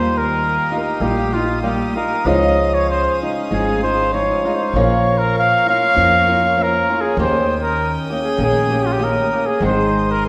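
A straight 4/4 pulse at 98 BPM drives this romantic, festive Mexican folk mariachi excerpt, where a warm, classical-style solo trumpet sings the melody up front over fingerpicked acoustic flamenco guitar, a softer bowed violin section holding rich, reedy sustained chords with light vibrato and a nasal gut-string period tone, and a woody, thumpy pizzicato upright bass, all bathed in a recital-hall reverb as the harmony moves from Ebadd9 through Dbadd9, Bbm and Eb7 to land on Ab at 9.6 seconds.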